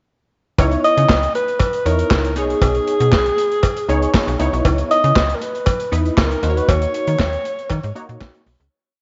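Late-night and funky, this short early-eighties boogie funk piece in C# dorian moves at 118 BPM with a straight 4/4 feel, as an up-front alto saxophone with vibrato sings motif-based song phrases over a snappy, metallic-edged FM slap bass playing a fat syncopated line with slides, a detuned sawtooth polysynth pushing filter-plucked drop2 chords with grace notes and chorus, a dark, tight four-on-the-floor drum kit with clap-layered snare, and a dry cowbell in the background tapping quarters, all through light reverb across C#m9, B69 and D#m7 before a fade-out from 6.7 seconds.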